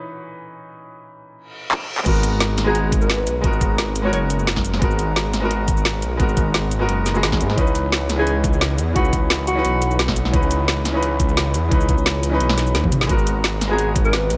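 A straight 4/4 groove at 174 BPM drives this soulful, melancholic slice of liquid drum and bass in G# minor, cut from a longer piece. It opens on a bright grand piano, brilliant and up front, with a touch of delay, voicing C#m9 before an electronic reverse cymbal rises at 1.5 seconds and a short drum fill leads into the drop at 2.1 seconds. From there a knocking electronic kick and an up-front garage kit carry the beat. The kit brings a woody snare, metallic hats, handclaps, shaker, toms and crash, and both kick and kit are layered and re-recorded in a small room. Underneath sits a menacing detuned saw bass with a filter swell, fast attack and saturated sustain, while the harmony moves between G#m9 and C#m9. A breathy alto saxophone in a mellow jazz style enters at 2.7 seconds, sounding distant and roomy with vibrato, scooped notes and delay as it drifts in brief solo phrases over light reverb.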